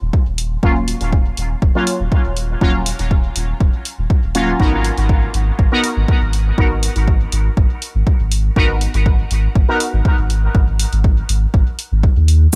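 Dub techno with a cavernous, deep mood, cut from a longer piece: a round, soft sub bass with sidechain pumping sits up front beside a punchy, layered kick drum, a tape-warm analog hi-hat rides above, and a juicy, detuned polysynth plays resonant, filter-swept stabs through chorus, phaser, sidechain pumping and dub echo in a fairly dry room.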